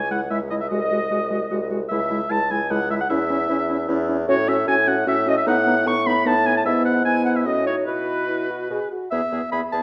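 A pure, distant silver flute carries the melody over an up-front oboe with a smooth top on the second line and a roomy bassoon bass touched with light vibrato, joined at 0.1 seconds by a close-miked French horn and a warm clarinet in accompaniment. This quick, lively and graceful classical-period movement for wind quintet moves in a straight three-beat metre. Cut from a longer piece, it sits in a wet recital hall, with the harmony moving from C-sharp minor toward E major and settling on an E chord at 9.1 seconds.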